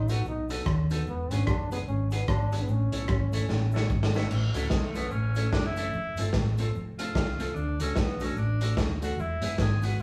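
A swung 148 BPM ska groove in A major drives this upbeat, joyful excerpt from a longer piece, where a gritty, up-front garage drum kit with a punchy kick and a round hollow-body bass anchor a smooth trombone melody that gives way at 4.5 s to a distant, roomy tenor saxophone solo after a drum fill, while a boxy upright piano plays stabs, an envelope-filtered guitar with spring reverb supplies background accompaniment, a quiet fingered electric guitar plays a riff, and a grainy cabasa sits very low in the mix, all in a moderate large-studio room sound.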